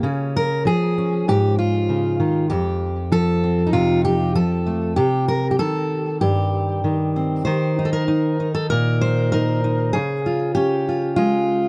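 A fingerpicked steel-string acoustic guitar, full-bodied and up front with a touch of tape echo, plays alone in this pastoral, gentle folk excerpt at 97 BPM in straight 4/4, moving through Db, Fadd9, Cm and Eb before returning to Db around 9.9 seconds, all set in light reverb.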